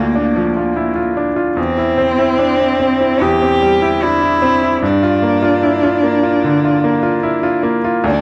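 A bright baby grand piano, intimate and up front with audible action noise and short sustain, opens together with a rich, smooth bowed cello carrying a vibrato second line in this short, longing and melancholic neoclassical fragment at 74 BPM in 4/4 with a rubato feel, moving through Bb/D, C/E and Gm7 in a dry, close 1970s-style studio sound touched by light reverb.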